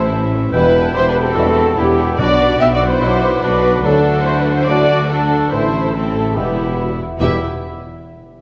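Heroic adventure film score in E minor at 144 BPM, swashbuckling and adventurous, where a distant, intense violin section carries the melody over a close, woody viola accompaniment, airy flutes, a present oboe, a soft clarinet and quiet second violins, with ringing harp arpeggios, dark trumpet stabs, a mellow tuba, focused cellos and smooth double basses holding the bass, roomy horns and trombones sustaining chords from 0.5 s, and round timpani strokes at 2.2 s and 7.2 s, all set in a wet scoring-stage reverb in this brief excerpt from a longer piece.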